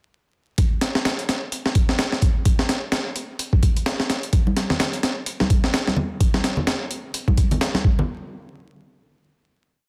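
A swung, looped breakbeat at 128 BPM drives this short, energetic and raw piece, its gritty sampler-style drum kit of thumpy kick, high-tuned snare and hi-hat sitting up front with edits and a small room reverb from 0.6 seconds, joined at 4.5 seconds by a close, dry loop of ringing high and low congas, all in a dense, heavily limited master dusted with vinyl crackle before a final hit at 8.1 seconds.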